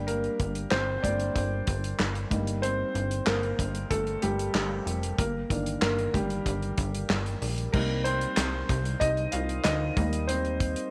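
A straight 4/4 beat from a dry, damped 70s drum kit with dark cymbals, crash, hi-hat, snare and handclaps drives this dramatic piano-driven pop fragment, as a smooth, vintage grand piano sits up front over a punchy, funky analog bass with a sawtooth filter pluck, and a very quiet, hollow group handclap joins at 8.4 s, the whole heard in a light studio reverb.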